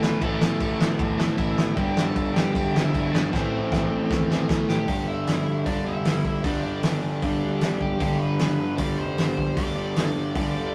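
A raw, urgent punk rock passage bursts in at 154 BPM in a straight 4/4, with every part sounding together from the start: a crunchy overdriven guitar riff sits up front, shadowed by a very quiet overdriven semi-hollow guitar and a double-tracked, bright fuzz guitar, both also playing low riffs. Above them, a smooth overdriven lead guitar carries the melody, ranging high over chords that move from A5 to G5 and then Am. Underneath, a growly, punchy fuzz bass sits in the background, while a loose indie drum kit with a fat snare, a punchy kick, hi-hat and crash cymbal comes across saturated and gritty with a rolled-off top. A drum fill at 3.3 seconds leads into a half-time section at 4.9 seconds, where the harmony settles on G5 and the drums drop out at 10.4 seconds, just before the rest of the band breaks off. The whole thing has the rough, lightly reverberant feel of a rehearsal-room take, cut from a longer piece.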